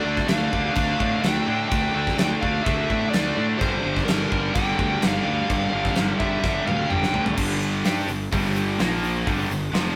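A gated 80s drum kit sits up front with a fat snare, tight kick and bright cymbals in a big, airy room, driving this heavy hard rock excerpt in G minor at 127 BPM, with a fill from 6.4 to 7.4 seconds leading into a new section. Behind it, three picked guitars (a cranked overdriven stack, a double-tracked high-gain distorted part and a scooped high-gain one) play riffs, while a growly fuzz fingered bass holds the low end. A dark, smooth overdriven lead guitar carries the melody until 7.2 seconds, all caught in a rough rehearsal-room recording with moderate reverb.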